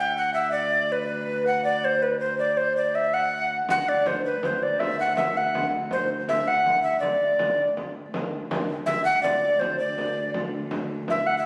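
This medieval dance moves in a straight 6/8 at 108 BPM in D mixolydian, with a festive, ancient mood, and is heard as a short cut from a longer piece. A mellow tenor recorder carries the melody from B4 to G5, sitting up front with a woody, airy tone, vibrato and a crisp, chiffy attack. Beneath it, one player on a fretted, bowed viola da gamba holds a close, ringing drone on D2, its gut-string sound warm and slightly reedy with light vibrato in period style. A deep, large frame drum enters at 3.7 seconds with a compressed, saturated acoustic body and stops at 11.2 seconds. The performance was captured on a phone in a recital hall, wet with 1.7 seconds of reverb, then given added studio reverb and compression.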